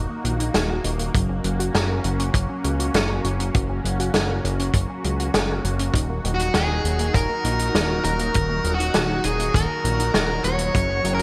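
A straight 4/4 groove at 100 BPM drives this dreamy, nostalgic synthwave excerpt. A dry, mid-forward soul drum kit of hi-hat and medium-tuned snare enters at 0.2 seconds, its gated reverb adding a retro sheen, and a tight, up-front kick joins at 1.1 seconds. A fat, detuned sawtooth bass with a filter sweep and fast-attack, decaying notes anchors the low end. Above it, a lush unison pad holds sustained chords over a sub octave, its slow attack and long release colored by chorus, phaser and sidechain pumping. In the background, a round, nasal analog pluck plays arpeggios through chorus, phaser and delay, while the harmony moves from D#m to F# and back to D#m. At 6.3 seconds a dark, fuzz-distorted lead guitar carries a picked melody with delay, a very quiet riser appears in the closing moments, and the mix sits in a moderate hall reverb with bright 1980s-style digital production.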